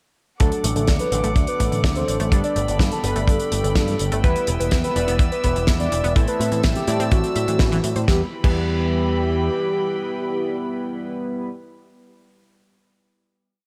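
The recording is dry and close, giving this short, complete italo disco piece a bittersweet, melodramatic air. An up-front, tight kick drum drives a four-on-the-floor beat, while a damped 70s drum kit adds a fat snare, closed hi-hat and crash, the kit carrying gated reverb. A picked electric bass with an envelope filter plays bright, octave-jumping lines, and an analog pluck runs an eight-step arpeggiated sequence in the background, round and detuned, with sampler grit and tape echo. A chorused polysynth adds glossy, retro stabs of held chords with syncopated pushes, beneath a studio string section whose reedy, gut-string tone sustains a smooth pad. On top, the soft octave-layered synth lead sings a repeating riff with vibrato, cassette-tape colour and digital delay. After a band accent at 7.6 seconds, the drums and pluck stop at 8.6 seconds and the bass follows at 9.5 seconds, leaving the lead, strings and polysynth on the final chord until 11.5 seconds.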